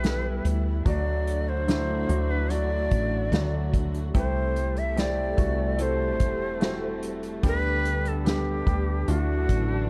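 A breathy, bright shakuhachi with vibrato and a crisp, chiffy attack carries the melody up front over a clear, polished concert grand piano, a round, woody fretless electric bass, an acoustic small-room drum kit with a tight kick and bundle sticks, and intimate, bowed sul tasto strings in the background, all in a hopeful, tender pop ballad at 73 BPM with a dark, warm, dry production.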